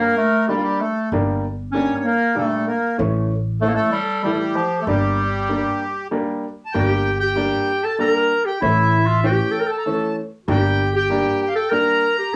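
This home cassette recording sits in a small room with moderate booth ambience, and the clarinet, accordion and piano carry the softened grain of tape. It is a short cut from a longer klezmer piece at 96 BPM in 3/4, with a bittersweet yet festive mood in G Dorian with a raised fourth, moving between G minor and A. A distant, roomy clarinet leads the melody in a classical solo style, while the reedy accordion, with its slow beating, plays a second line above it. A woody upright piano with short sustain accompanies underneath, and a thumpy pizzicato upright bass with steel strings joins at 1.1 seconds. A brief break at 6.1 seconds leads into a new section, and the piano drops out at 12.0 seconds as the clarinet and accordion carry on to the end.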